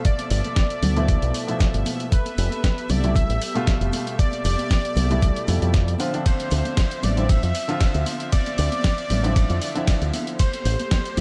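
Nu-disco at 116 BPM in D dorian with a sensual, sleek mood, built on an up-front thumpy electronic kick, a gritty, tape-tinged sampler-style kit of hi-hat, ride and snare, distant maracas and congas, and an up-front fingered electric bass with an envelope filter, while a mellow dark grand piano with sidechain pumping and tape echo accompanies until 10.4 s beneath soft, sul tasto chamber strings that also pump, and a thick, detuned sawtooth unison lead with vibrato and tape echo carries the melody over chords moving from G13 to Fmaj9#11, Dm9 and Am7.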